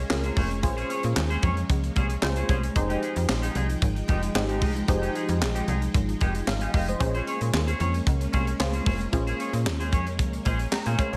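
A shimmering string machine's sustained violin chords, a bright, twangy clean electric guitar riff with analog chorus, and a snappy, metallic slap-like FM bass open this slick, funky early-eighties boogie funk excerpt at 113 BPM, tuned to A4 = 435 Hz and moving between Bbm9 and Fm9. A punchy detuned polysynth comps with a filter pluck, and a tight funk drum kit with a high-tuned snare and handclaps joins the bass up front, while very quiet, thick-skinned congas sit underneath. Moderate plate reverb soaks the whole mix in a dreamy haze.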